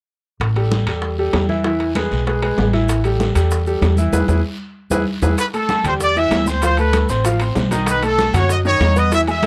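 Fiery and passionate, this salsa fragment drives forward in a straight four, cut from a longer piece. A woody, thumpy pizzicato upright bass on gut strings sits up front from 0.4 seconds, joined almost at once by a brilliant concert grand piano whose action noise and long sustain give its accompaniment an intimate, polished presence. Around them come warm, thick-skinned congas, while tight, high-tuned bongos, ringing metal-shell timbales and a raspy, distant guiro sit in the background, with grainy, saturated maracas arriving at 2.9 seconds. A drum fill and a band accent mark the turn at 4.1 seconds, and at 5.4 seconds a punchy trumpet section takes the melody up front with light vibrato as the harmony moves through minor sevenths toward a B7. The room carries a light reverb, captured through close, detailed microphones.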